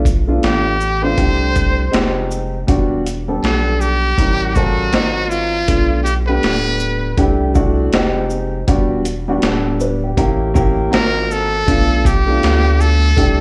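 A cool, smoky slice of jazz-hop with a relaxed swing, cut from a longer piece and heard as if played live through a club's PA, with the murmur of the room and a light reverb around it. A dark, woody upright piano sits up front with a slapback echo, laying down lush jazz chords from the start, while a saturated sub bass adds a deep, thick low end underneath. The boom bap drum kit has a gritty, pitched-down sampler character, pairing a thumpy kick and a high-tuned snare with hi-hat and shaker, as though re-recorded in a large room. A trumpet with a metal mute enters at 0.4 seconds and takes a solo from 2.7 seconds, its buzzy, breathy tone carrying vibrato and an intimate, whispered quality, also touched by slapback echo. A drum fill at 13.2 seconds closes the passage.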